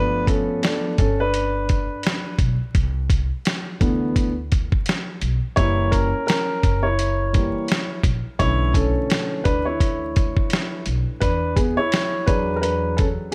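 Jazz-hop with a smooth, warm mood and a lazy swung feel, this short cut from a longer piece is led by a dark, mellow baby grand piano that plays a solo with long sustain, up front, over jazzy extended chords. A woody, growly pizzicato upright bass sits beneath it, and a gritty, compressed, sampler-style drum kit enters at 0.3 s with a thumpy kick, medium-tuned snare and hi-hat, sounding re-recorded in a large room. Vinyl crackle and light reverb with small room ambience give the whole a dusty, intimate sound.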